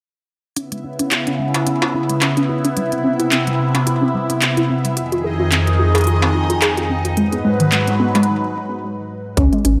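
IDM with an eerie, glitchy mood and a swung 16th-note feel, this fragment of a longer piece opens at 0.6 seconds with a swirling, detuned sawtooth pad pumping under sidechain and phaser, a dusty, nasal lo-fi pluck playing arpeggios through a filter sweep, and an up-front industrial drum kit of overdriven handclaps, crisp hats and struck metal. A faint, bright texture of random resonant filter steps bubbles beneath, and the chords move through C#m7, Cmaj7, Fm7 and G#m7 in a lush hall. After a break at 8.3 seconds, a round sine sub bass and a distorted electronic kick arrive at 9.4 seconds, just as the piece cuts off.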